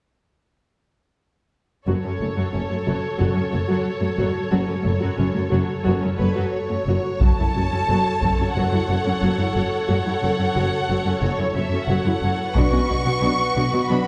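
Dramatic and epic, this cinematic orchestral excerpt opens at 1.9 seconds with bowed strings: warm violins on a second line over rich violas, while cellos and a soft-attacked, distant double bass section carry the bass, the strings alive with vibrato in a reverberant scoring stage heard from further back. A smooth, even, lush violin melody enters above them at 6.2 seconds, and a close, dry taiko ensemble struck with hard sticks punctuates the texture in two short bursts, first at 7.2 seconds and again near the end.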